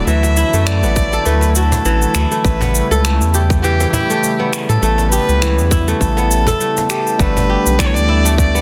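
A clear, close kamancheh carries the melody, its bowed line focused and marked by vibrato and portamento, with a digital delay trailing behind it in this short organic downtempo excerpt in A mixolydian at 101 BPM with a lightly swung 16th feel. Beneath it, a bright, ringing kora plays crisp fingerpicked arpeggios, also through digital delay, while a round analog bass sits up front, deep and dark with a fast attack. A smooth, detuned sawtooth pad holds sustained chords in the background, treated with chorus, tremolo and sidechain pumping, as the harmony moves from D69 to A7. The rhythm comes from a tight, overdriven electronic kick entering at 1.0 seconds, overdriven electronic cabasa and finger snaps with soft clipping on the snare, and a snappy, saturated cajon set back in the mix. At 7.2 seconds the chord shifts to Gadd9 and a barky overdriven tine electric piano enters through a combo amp with sidechain pumping and delay, adding bite to the earthy mood under light reverb and a dense, heavily limited master.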